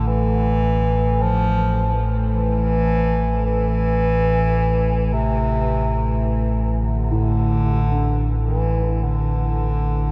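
A deep, ominous, rumbling drone sits up front in this desolate dark ambient excerpt as a distant, roomy solo bass clarinet carries a slow classical-style melody through diffuse delay, and a mellow, boxy grand piano enters with low arpeggios at 7.1 seconds, all held in a huge reverberant space.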